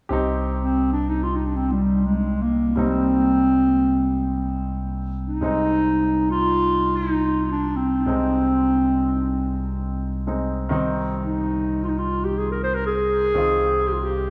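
A clear upright piano and an overdriven, picked electric bass begin together at 0.1 seconds in this bittersweet, soulful klezmer passage, cut from a longer piece and played in free time in C minor. The piano supplies intimate, woody accompaniment with short sustain and audible action noise, while the bass holds a dark, round, punchy C low in the mix's front. At 0.6 seconds a mellow clarinet enters as the solo voice, carrying the melody in a classical style with a smooth top and slapback echo. The harmony moves from C minor to Ab over C and back to C minor. A cathedral reverb places the whole group in a vast, echoing space.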